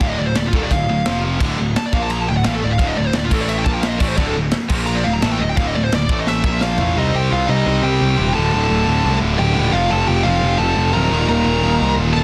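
A growly, fuzz-soaked picked bass sits up front in this heavy, relentless metal excerpt, driving beneath a dark, high-gain lead guitar solo and two bright, distorted rhythm guitars, one scooped, picking riffs in the background. A distant, roomy acoustic drum kit with a punchy kick, medium-tuned snare, china and crash cymbals and toms plays a fill before dropping out at 6.9 s. A second, brighter lead guitar line enters softly at 6.6 s, all wrapped in a dense, heavily limited modern master with small-room ambience.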